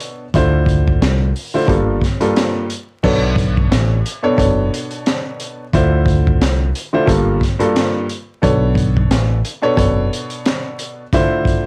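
Boom-bap hip-hop at 89 BPM in B minor with a 57% swing on the sixteenths, reflective and dark and cut from a longer piece: an intimate, woody upright piano with audible action noise and cassette-tape coloring moves through Dm9, Gm9 and Bm9 chords, a gritty, saturated breakbeat kit with a punchy kick, high-tuned snare, dark cymbals and a rolled-off, tape-worn top sits up front, and a round, deep fingered electric bass enters at 0.3 seconds and drops out at 10.1 seconds, in a dry home-recorded sound flecked with vinyl crackle.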